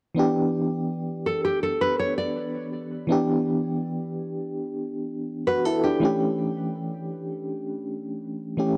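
Sensual and moody, this short R&B fragment cut from a longer piece sets a tremolo-washed FM electric piano, mellow with a noise layer, under fingerpicked nylon-string guitar arpeggios that enter at 1.3 seconds with a full-bodied tone and analog delay, moving from Em7 to A7 at 6.0 seconds in a gritty, cassette-tinged recording with light reverb.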